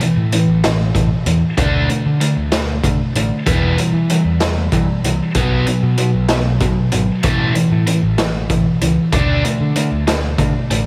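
A light studio reverb gives this short fragment of indie rock a close, unvarnished sound, with the guitar and drums placed up front. The mood is bittersweet and cool, moving in a straight 6/8 at 64 beats per minute counted in dotted quarters. A biting overdriven guitar carries the riff through the full 10.9 seconds, while a raw garage drum kit of hi-hat, boomy kick and medium-tuned snare sounds gritty and saturated, as if played in a small room with a rolled-off top. An overdriven picked electric bass enters at 0.2 seconds with a bright, growly, punchy amped tone underneath. The harmony moves through A5, D5, Em and B5 before returning to A5 and D5, all within a single section.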